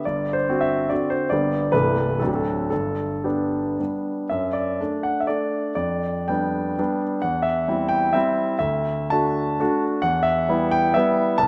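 A solo concert grand piano, intimate and up front with audible action noise, deep bass and long sustain, carries this rustic, graceful Romantic classical dance in 3/4, its dotted rhythms pushed and pulled by rubato between 107 and 154 BPM. After a brief opening phrase settling from D7 to G, a new section begins at 4.3 s and moves through D/F#, G7/F, C/E and D before coming to rest on E minor. The excerpt sits in a moderate concert hall reverb with a 1.9 s decay, and the piano is tuned to A4 = 439 Hz.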